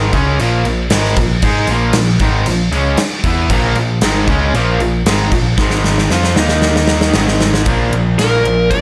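A short, powerful hard rock excerpt at 116 BPM in 4/4, with a bright, polished sound in a small room, where a gated 80s drum kit sits up front with punchy kick, medium-tuned snare and bright cymbals. An overdriven semi-hollow guitar and a tight distorted guitar play the anthemic riff in the background over a growly overdriven picked bass, joined at 3.5 seconds by a double-tracked distorted electric guitar, while the chords move from Bb5 through Ab5, F5 and Eb5. After a drum fill from 5.6 seconds, a biting lead guitar cuts in up front at 8.2 seconds with a brief melody just before the clip ends.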